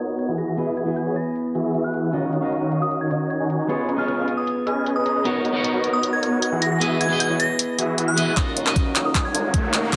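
Huge, lush supersaw chords sit up front in this emotional future bass passage, pumping against the sidechain through a low-pass filter and moving through Emaj7, Ebm9, Db7 and Bmaj9 in Eb minor at 154 BPM with a half-time feel. Over them, a glassy, crystalline FM synth bell carries the high melody with chorus, phaser and tape echo. A twangy electric guitar at the edge of break-up adds fingered accompaniment with subtle chorus and tape echo. An overdriven pop drum kit with handclaps and filtered hi-hats keeps an up-front, small-room presence while a filter sweep runs beneath the opening stretch. At 8.4 seconds a build-up begins: a knocking electronic kick enters up front and a fat, wave-folded analog bass joins in the background, a drum fill arrives, filter sweeps touch the supersaws and the bell, and a riser joins at 8.9 seconds before the cut from the longer piece ends, all set in light digital ambience.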